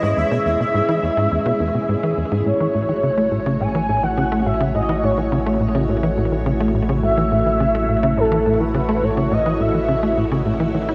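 A tight, punchy sequencer bass drives this luminous, cosmic piece of ambient space music from the first moment. Its sawtooth and square-wave tones are sharpened by ring modulation and a plucked filter, with subtle chorus and delay. Above it, an expressive synth lead carries the melody in a smooth, dark voice, with vibrato, a moving notch, cassette-tape colour, ensemble chorus and delay. A vintage string machine holds lush sustained chords through a phaser and ensemble chorus, its slow attack forming a full bed. For the opening 2.5 seconds a bright, detuned gated texture pulses quietly in the background, and at that point a deep, round sine sub bass enters on a single low note. This fragment of a longer piece sits in straight 4/4 inside a huge, wet reverb with an 8.6-second decay and a tape-coloured finish.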